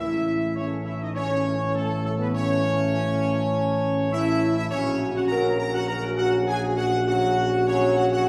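Solemn and regal, this short classical brass passage, cut from a longer piece, moves in a steady, straight 4/4. A clear trumpet section carries the melody up front, while a warm French horn section holds sustained chords with light vibrato, sounding distant and roomy. Beneath them, a mellow trombone section sits tightly in the background with its own sustained chords, and a dark, punchy tuba anchors the bass up front with a smooth top and a touch of vibrato. The harmony rests on an A chord before shifting to F#/A# at 4.7 seconds. A wet concert hall reverb frames the ensemble as if heard from further back in the room, with a hint of small room ambience.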